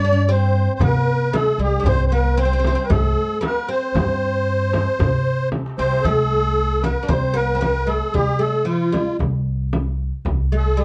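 A reedy musette accordion carries the melody up front from the start of this passionate Arabic maqam ensemble piece in C maqam huzam, moving at a straight 114 BPM in 4/4, its wet musette tuning giving it a shimmering, smooth edge. Beneath it, a plectrum-plucked fretless oud with double strings plays a woody second line, while a pizzicato upright bass on gut strings sits up front with a thumpy weight. A crisp metal-shell darbuka, struck with hard hands, sounds distant in a large room in the background, and a deep, compressed frame drum played with soft hands joins at 0.8 seconds with a saturated tone. A drum fill from 5.5 seconds leads into a new section at 6.0 seconds, where the darbuka stops and the frame drum carries the percussion on its own. Light reverb and a dark, warm production frame this short portion cut from a longer piece.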